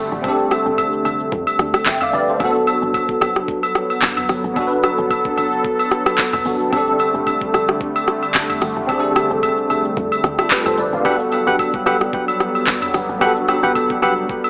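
Heard through a small-speaker sound with light reverb, this relaxed, warm amapiano excerpt swings gently over chords moving between F69 and Gmaj7. Up front, a bright, clean tine electric piano with ensemble chorus sits alongside an electronic drum kit of knocking kick, smooth hats, handclaps, rim clicks, shaker and toms with gritty 12-bit sampler texture. A smooth, airy, detuned pad with chorus holds sustained chords, acoustic, band-limited agogo bells add color, a deep, round, dark log drum bass sits in the background, and at 11.1 seconds a hollow, organ-like percussive stab with chorus and digital delay enters, lasting until 14.1 seconds.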